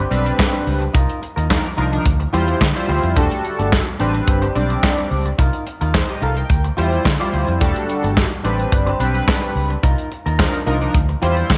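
A glossy, detuned polysynth sits up front, its chorused pulse and sawtooth tones sustaining over a cycle of minor eleventh chords (Am11, Cm11, Dm11, Em11) in this late-night, danceable early-eighties boogie funk excerpt at 108 BPM in a straight 4/4. A dark, foam-muted fingered bass with a round, punchy tone anchors the groove, while a mid-forward studio kit with a punchy kick, medium-tuned snare, hi-hat and handclaps drives it. Further back, a bright, twangy clean electric guitar plays a picked riff through lush chorus, all within a light studio reverb across roughly 11.6 seconds.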